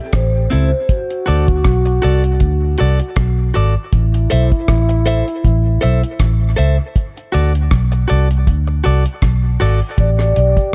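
A round, foam-muted electric bass sits up front in this heavy, hypnotic dub reggae excerpt, with a dry, dark drum kit of tight kick, hi-hat and rim click swinging over a loop of A minor and D. A punchy trombone with vibrato and scooped notes holds a second line through dub echo, while a clean, compressed electric guitar picks accompaniment. A metallic, ringing vibraphone touches in briefly at the start, then returns alongside the trombone and rhythm section at 10.0 seconds once the chords fall away, all in a close, dry room.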